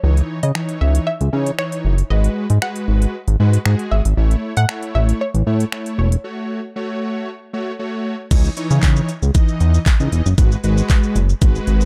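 This dance-pop piece opens with an analog pluck, a big bright polysynth and a chorused synth bass sounding together, and a pop drum kit joins a moment later. The mood is driving and confident over a straight 4/4 pulse. The bass sits up front, glossy and mellow with a retro, detuned character and sidechain pumping. The polysynth carries the accompaniment with a fat, warbling vintage tone that also pumps. Above it, the round, decaying pluck plays the melody through chorus and dub echo until 7.8 seconds, reaching into a break that runs from 6.2 to 8.3 seconds, as the chords move through C#madd9, G#m7, A and F#m. The electronic kit is layered and forward, with a knocking kick, crisp hats, handclaps, finger snaps, shaker and crash cymbal, all set in a dark, dry production.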